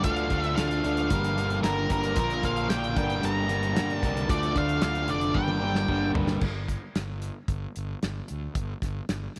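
A swaggering, gritty slice of classic rock in G minor opens with everything at once: a dark, fuzzed octave lead guitar sings its melody up front over two riffing rhythm guitars, fingered bass and a damped 70s drum kit, all moving at 113 BPM in a straight 4/4. The overdriven semi-hollow guitar sits forward with a hollow-body warmth, while the cranked stack guitar adds a bright, overdriven edge colored by a phaser, and the lead carries distortion and a slapback echo. Underneath, the bass is round and punchy, its fuzz and overdrive giving the low end a gritty growl, and the kit is dry and up front, with a medium-tuned snare, tight kick and a rolled-off top on its crashes, hi-hat and toms. The chords cycle through Dm, Gm and Bb until a drum fill at 5.4 seconds leads into a G5 at 6.4 seconds, where the guitars fall away and bass and drums carry on together. Light reverb and small-room ambience give the cut a close, roomy feel before it breaks off as part of a longer piece.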